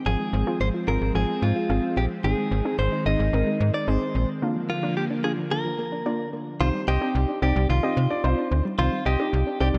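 A dark, hall-soaked mix frames this driving, melancholic synth-pop fragment, with an up-front, slap-like FM bass giving snappy, metallic attacks beneath a direct-recorded clean electric guitar that carries the melody through digital delay. A warbly, dusty lo-fi pluck and a soft, round, nasal pluck playing arpeggios in the background fill the middle, while a lush, thick unison pad holds chorused chords until 6.6 seconds, through a break that begins at 4.4 seconds. At 6.6 seconds an intimate concert grand piano with audible action noise enters, adding a delayed second line.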